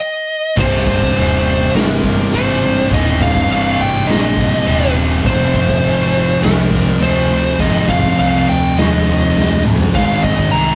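A compressed, dark fuzz lead guitar opens this hypnotic, heavy stoner and doom metal excerpt alone before, at 0.6 seconds, an up-front raw garage drum kit with a punchy kick, a growly overdriven fingered electric bass, two thick fuzz guitars and a bright, double-tracked high-gain distorted guitar in the background drive a low riff through Cm and Fm toward Ab, with a drum fill at 9.4 seconds, all captured as a rough rehearsal-room recording with light reverb and tube saturation.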